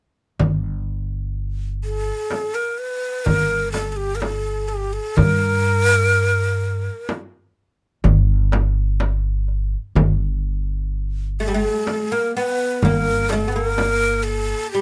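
A dark, thumpy upright bass, a saturated clay darbuka and a dry, bright frame drum open this festive, stately Arabic maqam ensemble fragment in 10/8 at 126 BPM, with a breathy, unsteady ney carrying the up-front melody with vibrato from 1.8 seconds and a woody, double-strung oud adding a deep second line from 11.4 seconds, all in light reverb.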